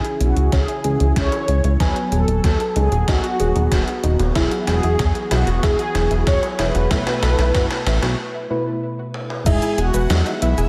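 A straight 4/4 pulse at 94 BPM drives this nostalgic, romantic synthwave excerpt in E major, built from an overdriven, thumpy electronic kick and a gated 80s digital drum machine whose snare, hi-hat, shaker, toms and crash carry gated reverb and grit, with fills running through most of the passage. A glossy, nasal chorused synth bass sits up front from 0.2 seconds, while a dark, brassy synth lead carries the melody with chorus and delay. In the background, a shimmering pulse-width pad holds sustained chords that pump with sidechain compression, a round analog pluck spins arpeggios under a filter sweep, and a soft FM electric piano adds chorused stabs. The harmony moves from C#m through G#m7/D#, Eadd9 and B7sus4, and after a short break from 8.2 seconds the music opens onto Emaj7 at 9.5 seconds, where a vintage string machine of violins enters with a bright second line. A lush hall reverb soaks the whole mix in a dreamy haze.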